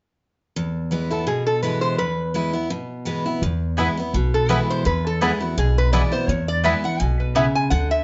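A swung 4/4 at a brisk 168 BPM drives this lively, virtuosic bluegrass cut in E mixolydian, taken from a longer piece. A full-bodied, picked dreadnought acoustic guitar sets up the accompaniment on an E chord from 0.6 s, and soon a lap resonator guitar, played with slide and fingerpicks, carries the melody up front with a metallic, nasal edge. At 3.4 s the second section arrives with a woody, growly pizzicato upright bass adding a thumpy low end close in the mix. From 3.8 s a twangy, percussive banjo weaves bright arpeggios while a round, double-strung mandolin adds quieter stabs. The production is dark, with a moderate studio reverb giving the ensemble a sense of shared space.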